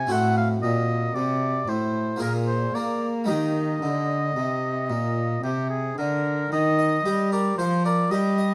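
A solo oboe with light vibrato carries the melody up front in this brief, introspective excerpt from a baroque-style sonata movement in triple time. Its flowing line sits over a continuo of plucked harpsichord, full and brilliant with three sets of strings, and a single bowed cello that holds the bass with smooth, even vibrato. Light reverb and a dark, warm production frame the playing, and a new section arrives at 6.5 s before the piece is cut off at 8.5 s.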